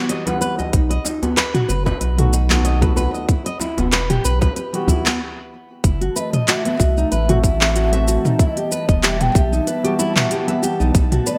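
A felt-muted upright piano and a fingerpicked nylon-string guitar open this meditative organic downtempo excerpt in E harmonic minor at 94 BPM, with a 16th-note swing, joined by a layered deep house kit of handclaps, smooth hi-hats, shaker and toms under gated reverb, a distant, cracking djembe, a tight electronic kick, and a round sine sub bass that pumps against the kick. After a brief stop at 5.2 seconds, a detuned, chorused pad settles into the background at 5.8 seconds as the chords move from Em through F#m7b5 back to Emadd9. From 6.2 seconds a hollow, breathy bass bansuri carries the melody with vibrato and digital delay, all within a bright 1980s-style digital production with light reverb.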